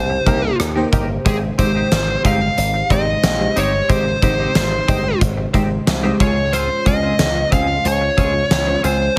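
Set in a small room with light reverb, this glossy, uplifting 1980s-style pop excerpt at 91 BPM puts an up-front fuzz lead guitar with tape echo on the melody, over a dreamy FM electric piano with a soft pad layer shimmering through chorus and phaser, a bright slap bass with an envelope filter, a clean, twangy twelve-string electric guitar riff bathed in lush chorus, and a huge arena drum kit that enters at 0.3 seconds with a fat snare and punchy kick, all moving through Cm7, Abmaj7 and Dbmaj7.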